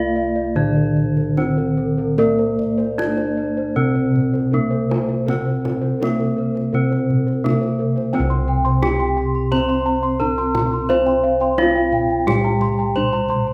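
This ceremonial, serene Javanese gamelan passage, cut from a longer piece, opens at once with the full bronze ensemble in C slendro, moving at 74-87 BPM in a straight 4/4. Up front, a bronze metallophone struck with a horn mallet carries the melody in a bright, airy, ringing voice, while a second metallophone beneath it plays the accompaniment with padded disc mallets, its paired tuning giving a dark, smooth tone. Bossed gongs with padded beaters spin soft, mellow arpeggios in the upper register, joined further back by a third metallophone whose paired tuning adds a shimmering beat to its own high arpeggios. Lower down, round, beating bossed gongs hold the bass line. At 1.0 s the kendang joins with tight, soft hand strokes that sound distant, and at 8.1 s the music moves into a new section. A generous recital-hall reverb lets the bronze resonate and gives the whole ensemble a ceremonial sense of space.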